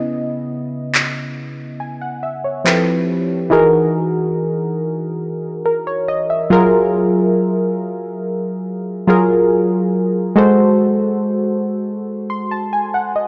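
Round, sawtooth-edged analog keys open this smooth, tender contemporary R&B fragment up front, their mellow, chorused chords carrying a filter sweep through the first 3.5 seconds. Overdriven electronic handclaps with a small-room character sit close in the mix from 0.9 to 2.9 seconds, while the keys' fast-attack, decaying voicings move from C#m9 through lush major-ninth colours to a closing G#7b9. The dark production, with light reverb, gives the whole passage, cut from a longer piece, a warm glow.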